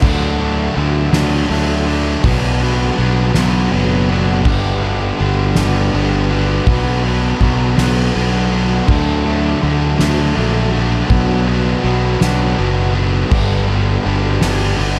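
A double-tracked fuzz guitar sits up front, its picked, compressed riff cycling through D, B minor and G in this cinematic, euphoric post-rock excerpt at a slow 54 BPM in 6/8. A growling fingered electric bass, bright and overdriven, also sits up front, while a soft-mallet drum kit adds a fat snare, a boomy kick, and mallet-struck ride and crash cymbals with a big-room sound. Light reverb and a small room ambience surround the 15-second passage.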